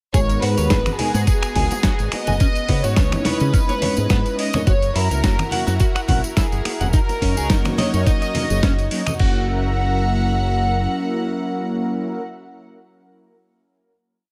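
Riding a four-on-the-floor kick at 106 BPM with a light 16th-note swing, this short, sunny nu-disco piece in F# mixolydian sets a gritty, thumpy electronic kick and a dusty sampler-style kit of snare backbeat, hats, finger snaps and crash beside bright tambourine, bongos and congas, under a funky, envelope-filtered fingered bass, a slightly broken-up picked guitar riff through analog chorus, and dark, round synth-brass chord stabs and a lush detuned pad, both pumping and chorused, while a soft, floating sul tasto violin section spins hook phrases through digital delay before the drums and percussion drop away around 9.3 seconds and a final F#7 chord rings to 12.2 seconds.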